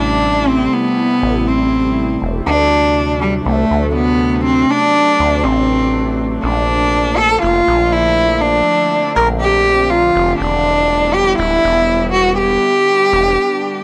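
IDM at 121 BPM in a straight 4/4, cerebral and eerie, cut from a longer piece. A rich, nasal bowed cello carries the melody up front with vibrato and portamento, trailed by tape echo, over a warbling, lo-fi pad of detuned, chorused sustained chords and a rubbery, resonant acid bass with transformer saturation that drops out for a brief break at 13.4 seconds. The harmony moves from Am7 through D7 and Bbmaj7 to Em7, and the dry, gritty hardware recording sits in a light studio reverb.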